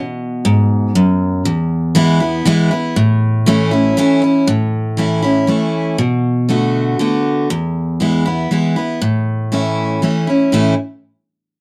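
A dry, close 1970s-style studio sound with light reverb frames this down-home, heartfelt country excerpt in 3/4 at 119 BPM in A major, where a lone picked steel-string acoustic guitar, bright and full-bodied with an up-front dreadnought tone and audible finger squeak, moves through B5, E, A, Bm7, E and A from 0.0 to 10.7 seconds.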